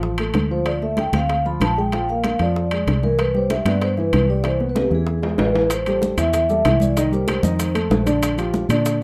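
A straight 4/4 groove at 190 BPM drives this lively, sunny Afro-Cuban jazz excerpt, with tight, high-tuned bongos and bright, thin-skinned congas played with soft hands in the background, joined by ringing metal-shell timbales. A foam-muted fingered electric bass sits up front with a direct, amped tone, while a dark concert grand piano supplies mellow accompaniment with deep low end, moving through chords such as Dm7, Bb9 and Cmaj7 in C major. From 0.5 seconds a vibraphone played with soft mallets carries the melody, its metallic shimmer colored by slow motor vibrato and a boxy small-room sound. A drum fill at 4.8 seconds leads into a second section at 5.7 seconds, where the key shifts to A minor and grainy maracas join close in the mix. Light reverb gives the ensemble a touch of space as the harmony passes through Am7, Cm7, F7 and Bb6.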